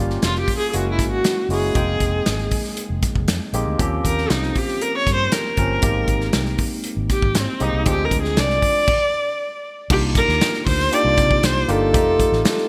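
A barky tine electric piano, lightly overdriven through a combo amp and bathed in lush chorus, opens this polished 1980s jazz-funk pop fragment alongside a dark, foam-muted fingered bass with a round, amped tone. An acoustic studio drum kit enters almost at once: punchy kick, medium-tuned snare, hi-hat and crash sit up front in a pumping room with gated reverb. Over them a single bowed viola carries an expressive solo, its warm, boxy voice placed close, with vibrato and portamento. Harmony moving from Gm7b5 through Fm11, Eb13 and Abmaj9 sets a nocturnal, bittersweet mood until a stop arrives at 8.9 seconds. At 9.9 seconds a new passage begins on Cm11 and moves to F7, and the cut closes at 12.7 seconds inside a bright, digital 1980s-style production with light reverb.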